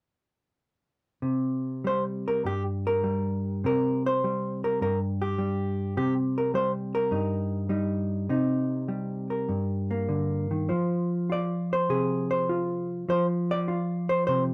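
Solo jazz with a cool, smoky mood, swung and played with rubato: a clean, fingered hollow-body electric guitar sits up front alone from 1.2 to 14.5 seconds, moving from a Cm7 chord to Fm at 10.7 seconds. The dark tone, warm production and moderate club reverb give this short excerpt cut from a longer piece its cool, smoky character.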